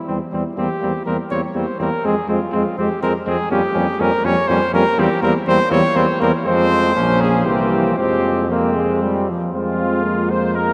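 A mellow, softly attacked cornet leads this solemn, heroic brass quintet fragment in a rubato three-time, with a vintage-toned trumpet on the second line, a clear trombone and a smooth-topped French horn accompanying in the background, and a warm tuba up front on the bass, all set in a wet, long-decaying cathedral reverb.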